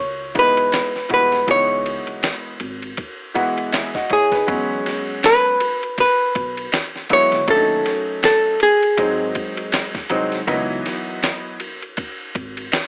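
A 16th-note swing at 80 BPM in 4/4 drives this nocturnal, cool jazz-hop cut, taken from a longer piece in C# minor. The dusty soul sampler-style kit enters at 0.3 seconds with a thumpy kick, fat snare, hi-hat and ride cymbal, sounding compressed, gritty and tape-warm. Underneath, a woody, dark upright bass with gut strings plays pizzicato in the background from the very start. Up front, a clean, picked hollow-body archtop guitar carries a short melody touched with plate reverb and falls silent at 10.1 seconds. A concert grand piano fills in the accompaniment with an intimate, vintage smoothness, its deep low end and audible action noise also bathed in plate reverb. The changes drift from C#m9 through E69, D#m7b5 and G#7 before settling on C#m11, all heard through a moderate room and a lo-fi AM radio coloring.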